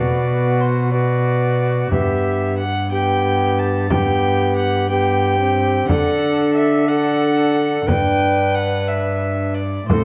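A classical, Renaissance-style consort dance in 6/8, rustic yet courtly, this excerpt places a dark, nasal gut-string violin up front on the melody, joined by an airy, bright alto recorder with vibrato on the second line, a clear, distant trombone in accompaniment and a rich, reedy period-style cello holding the bass. A close, dry frame drum played with soft hands enters at 1.9 s. The consort is set in a moderate stone-room reverb.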